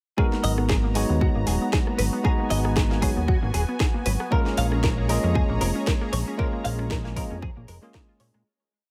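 Nu-disco groove in G# dorian at 116 BPM with a light 16th-note swing, sleek and groovy, where a punchy overdriven four-on-the-floor kick and a house kit's cracking snare, rim and bright hats play alongside a fat, detuned analog bass riff, while a bell-like tine electric piano with tape echo holds syncopated G#m9 and A#m7 chords over a lush, nasal unison pad, a twangy direct-recorded clean guitar repeats a 16-step riff, and a very quiet round analog pluck runs an 8-step arpeggio, all fading out from 5.7 seconds.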